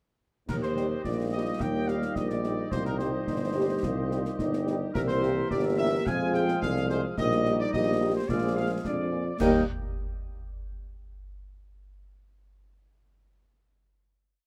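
Proud and rousing, this short, complete military-style march for wind band strides along at 108 BPM in a straight 2/4 in Eb major. The trumpet section carries the smooth-topped melody with light vibrato, while a vintage-toned euphonium sings a counter-melody in the background, the woodwind section holds tight sustained chords, the French horn section adds after-beat chords, and the dark, punchy trombone section sustains harmony beneath. An up-front, roomy tuba with a soft attack anchors the bass on the beats, the concert snare drum, dark clash cymbals and concert bass drum keep a close marching pulse, and after the horns join at 0.8 seconds, the band settles on a final Eb chord at 9.4 seconds in light reverb.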